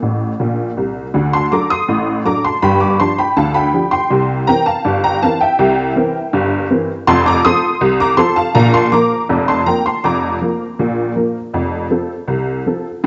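A short, detuned honky-tonk fill on solo upright piano opens this lively, playful ragtime cut, taken from a longer piece in Bb major at 81 BPM in a straight 2/4. From 1.2 seconds the jangly, up-front piano moves through D7, G7 and C7 before settling on F, then Bb and Bb/F, spanning from deep bass to high treble. A lush hall reverb surrounds the piano, and the home cassette recording gives it a vintage, rolled-off top.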